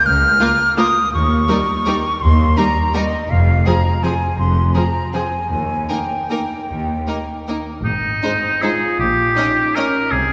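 Festive and elegant, this rubato orchestral ballroom waltz in 3/4, cut from a longer piece, sets a close, even violin melody above a lush background violin line, rich violas, focused cellos and clear double basses, with every string section bowed with vibrato. An airy silver flute with a crisp attack carries an up-front second line until 7.5 s. A distant, roomy oboe then takes over at 7.8 s, and mellow French horns add tight sustained chords from 8.2 s, all within the long, wet reverb of a church or concert hall.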